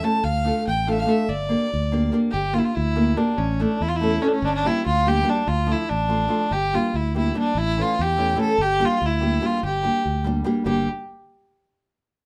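A biting, earthy bowed violin with light vibrato carries the bittersweet, fiery melody up front in this 5/8 Balkan wedding-band folk excerpt, over a woody, dark fingerpicked nylon-string guitar and a punchy fingered electric bass that enters at 0.2 seconds, all set in a moderate studio reverb.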